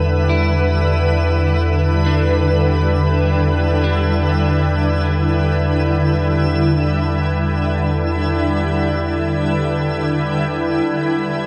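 Soaked in a huge ambient reverb and captured on cassette tape, this reflective, spacious ambient excerpt in E minor drifts at 51 BPM, with a bright, ethereal pad shimmering up front on sustained chorused chords over a deep, round sub bass tinged with tube saturation, while a slightly broken-up electric guitar fades in with compressed, picked arpeggios through diffuse delay until 9.4 seconds and a sparkling granular texture fades in behind, as the harmony moves from Em7 to C/E at 10.9 seconds.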